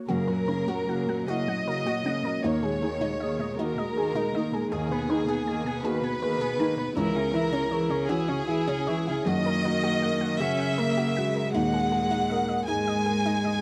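Reflective and longing, this neoclassical piece for piano and strings moves at a slow, rubato 53 BPM in 6/8, tuned slightly low to A4 = 439 Hz, in a short excerpt cut from a longer work. A felt-muted upright piano carries the accompaniment with a soft, mellow, boxy tone and audible action noise, while a very quiet, ethereal pad of detuned sawtooth and triangle layers holds sustained chords with slow attack and long release. From 0.1 seconds, an up-front chamber violin section sings the melody with light vibrato and a smooth top. Beneath it, a single viola with an airy bow fills in the accompaniment, and a pure, floating cello plays a second line, all three strings bowed sul tasto. An analog pluck, round, detuned and touched with a noise layer and moving notch, spins arpeggios through chorus and slapback echo. The harmony circles from F# through D#sus4, G#madd9/D# and C#m back to F# and D#sus4, captured with close, detailed microphones in light reverb that keeps the sound intimate.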